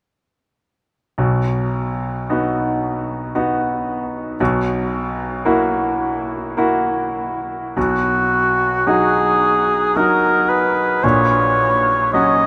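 A tender oboe carries the melody from 7.8 seconds, its warm tone shaped by a light vibrato and a soft attack, sung in a lyrical classical style and placed up front. This is a romantic classical duo in B major, moving slowly at 55 BPM in 3/4 with uneven, rubato beats. The grand piano accompanies from 1.2 seconds, bright and brilliant with a deep bass and an open, short-sustained sound. The harmony rests on B and F#7/B under the piano's opening, then turns from B to F#/A# once the oboe enters. Both instruments sit within a vast, echoing space whose huge ambient reverb lingers far beyond each note in this brief passage cut from a longer piece, which closes at 12.5 seconds.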